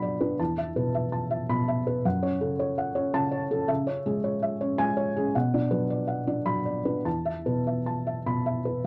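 A dry, close recording with the feel of a 1970s studio session and a light touch of reverb puts a felt-muted upright piano up front, its thick felt giving a soft, dark tone with the mechanical noise of the action clearly audible. This short cut from a longer neoclassical minimalist piano piece has a wistful, intimate mood. The piano plays solo throughout, moving in a rubato 3/4 at roughly 99-111 BPM and reaching from E2 up to B5. Its harmony passes from Esus4 through F#m, C#m and Bm before settling back on Esus4 at 7.1 seconds. The mellow, muffled character of the instrument and its close placement make the playing feel private, as if heard from the piano bench.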